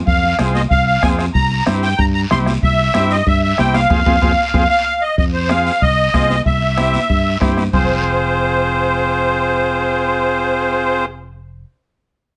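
A light reverb surrounds this cut from a longer cumbia, and its top end is softly trimmed. The feel is driving and passionate at 188 BPM in straight 4/4, in F harmonic minor, moving between F minor and C. An up-front, reedy musette accordion with a shimmering tuning carries the melody in a high register. Beside it, a vintage overdriven combo organ adds buzzy accompaniment with heavy vibrato, while a round, punchy fingered electric bass sits dark and up front. Close acoustic bombo struck with a soft beater, a raspy guiro and ringing, high-tuned congas in the background drive the groove. The band hits an accent from 3.9 seconds, the percussion drops out at 7.8 seconds, and the accordion, organ and bass carry on, with the bass sounding last.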